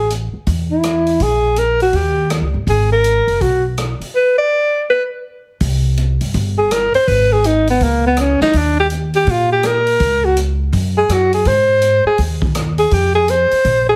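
A breathy, whispered alto saxophone carries the melody up front with vibrato and a soft attack, bathed in plate reverb, in this late-night, smoky small-group swing and bop fragment at 164 BPM, moving from G# minor to C minor at 5.6 s. Beneath it, a woody pizzicato upright bass sits close and present, while a distant, roomy big-band drum kit swings on hi-hat, punchy kick, rim click and snare with a rolled-off top. The whole cut has a heavily compressed radio sound with light reverb.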